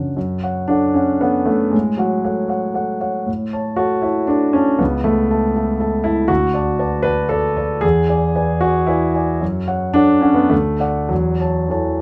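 A concert grand piano, placed up front with a deep bass and a warm tone, carries this romantic character piece entirely on its own from the first moment to 12.0 seconds. Set in F# minor and 3/4 time, the music moves with a flexible rubato, its tempo drifting between 99 and 123 BPM. The mood is passionate yet hopeful, as the harmony moves from F# minor toward A major before passing through B minor seventh and E seventh chords and returning home to F# minor near 9.4 seconds. The piano spans a range from C#2 up to A5, and light reverb gives the sound a gentle sense of space. Cut from a longer work, the passage closes on a D chord moving to A over E, leaving the phrase open.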